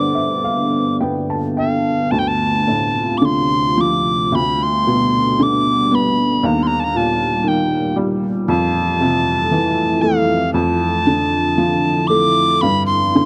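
A bright wooden whistle with a pure, tongued tone and audible chiff carries a mournful, haunting Celtic slow air in D dorian, drifting rubato at around 52-59 BPM over a clear, slightly detuned upright piano that opens with a fill in the first 2.1 seconds and a deep, dark pad with chorus and reverb sustaining chords such as Dm7, Eb and Fmaj7, all captured in a dry, close small-room sound in this short cut from a longer piece.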